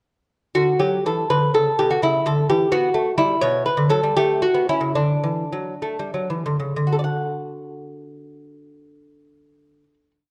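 Set in a moderate recital-hall reverb with a dark, warm production, this brief, serene baroque-style dance in D major and flowing 6/8 features a solo lute, fingerpicked and up front with mellow gut and double strings, spinning a delicate single-line melody over an independent bass line in counterpoint at a rubato 62-87 BPM, slowing from 2.7 to 6.7 seconds before settling on a final chord that rings until 10.3 seconds.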